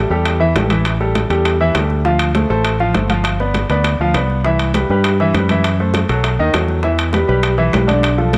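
A brisk 200 BPM salsa groove in straight 4/4 drives this short, danceable cut from a longer piece in A minor. Congas slip in at 0.1 seconds, with bongos and ringing metal-shell timbales joining at 0.3 seconds: the congas sound thick-skinned and soft-handed, the bongos tight and high-tuned, both very quiet with a vintage, band-limited character, while the timbales ring out more clearly in a live room. Up front, a clear, intimate grand piano carries the accompaniment from D3 to F5, its action noise audible and its tone polished. A round, punchy fingered electric bass sits just as close, moving between G1 and G2. The harmony moves from A5 through Dm7, G7 and Cmaj7, then quickens through F#m7b5 and B7 to land on Em7, all under a light reverb.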